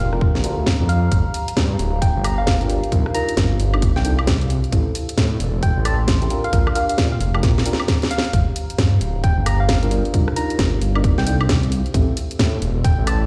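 A dark, detuned sawtooth bass sits up front in this bouncy, moody two-step UK garage passage, its deep, rumbling, saturated tone beating as the unison voices rub together. Together with it, a tight, layered electronic kick drives the swung groove alongside a garage kit of bright hats, a cracking snare, rim clicks and woodblock, with a drum fill arriving at 7.4 seconds. A soft, round synth lead carries the melody with a gentle, keys-like FM strike and vibrato, coloured by chorus, phaser, cassette tape character and tape echo. Deep, mellow chord stabs move through Bb6, Gm7, Cm11 and Am7, their dark tone shaped by a filter sweep and moving notch plus chorus, phaser and tape echo, before dropping out at 12.1 seconds. In the background, a warbling, nostalgic lo-fi pad breathes with sidechain pumping, chorus and its own reverb. The whole passage sounds as if played on a big sound system in a bare room, and it is cut from a longer piece.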